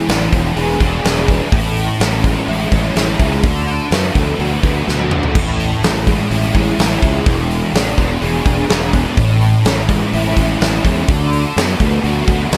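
A straight 4/4 pulse from a huge, acoustic arena drum kit drives this short rock cut, with a fat snare, punchy kick and crashing cymbals sitting up front in a big room, plus a drum fill at 4.9 seconds. A thick, double-tracked fuzz guitar plays the riff, distorted and washed in ensemble chorus, over a growly, overdriven fingered bass. Circling through E7, Amaj7 and D6 under light reverb, it has a wistful yet blissful shoegaze and dream-pop haze.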